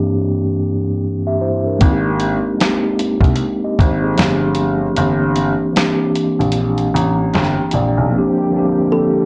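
A mellow, clean tine electric piano under a filter sweep opens this hazy, reflective swung lo-fi hip hop excerpt. At 1.8 seconds a worn, long-sustaining baby grand piano bass and a gritty, compressed sampler-style drum kit with a thumpy kick and roomy snare enter before the electric piano plays a fill, then a smooth, detuned analog pad with subtle chorus joins at 8.1 seconds and a woody, ringing kalimba plucks a single note at 8.9 seconds, all steeped in light reverb and warbling cassette-tape drift.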